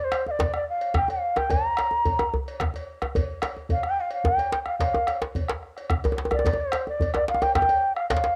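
Festive and powerful, this short cut from a longer West African drum ensemble piece rolls along in a straight 12/8. A bamboo bansuri carries the melody up front from 0.0 seconds, its pure, vibrato-laden, tongued line sitting between C5 and Bb5, with rolled-off highs and a cassette-tape effect. Beneath it, a round bombo sounds compressed and saturated, while a metallic cowbell rings with live-room air. Two tight, cracking djembes fill out the percussion: one close and dry in the background from 0.1 seconds, the other played with soft hands and placed up front from 0.4 seconds. The home cassette recording carries moderate spring reverb and small-room ambience, giving the festive groove an intimate, homespun character.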